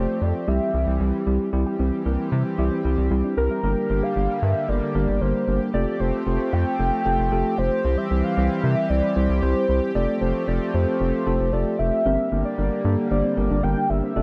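A velvety synth lead with chorus and phaser sings the melody over mellow tine electric piano, a shimmering chorused pulse-width pad and a deep, up-front analog bass, all starting together in this bright, wistful synth-pop excerpt at 114 BPM in a straight 4/4. A soft, very quiet pluck adds gentle detuned arpeggios from 1.7 seconds and returns at 12.1 seconds, as the chords move through C, Gm and Fadd9. Light reverb gives the whole a digital ambience.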